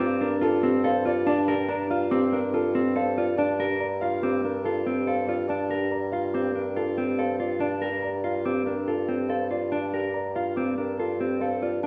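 A clean electric guitar sits up front with fingered arpeggios over a bassoon holding a low G with light vibrato, while a dark, worn baby grand piano with audible action noise carries the melody in the background and a bell-like, slightly out-of-tune celesta adds delicate arpeggios up high, the parts resting on a single Gm9 chord in this meditative yet urgent minimalist classical pattern piece at 142 BPM in 5/4, heard from further back in a wet recital hall.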